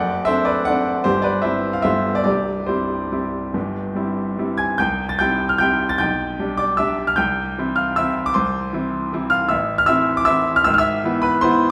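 A bright, brilliant grand piano plays alone, up front and natural, in this graceful, elegant classical waltz excerpt in C major, moving in 3/4 with a rubato feel at 137-166 BPM, ranging from C1 to A6 through D7/F#, G9, Am and E/G# chords, with a second section starting at 4.8 seconds, all set in a wet recital hall reverb.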